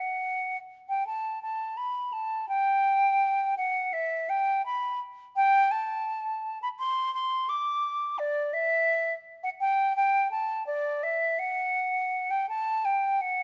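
A baroque-style classical fantasia for unaccompanied flute unfolds in a solemn, introspective mood, its flexible rubato phrasing moving over a four-beat metre. The silver concert flute plays alone for the full 13.4 seconds, ranging from D5 up to D6. Its metallic, airy tone is held straight, with a crisp attack. Close, detailed microphones place the instrument up front, while light reverb lends a faintly distant air to the room. As a fragment cut from a longer piece, this passage offers a brief, contemplative glimpse of the solo line.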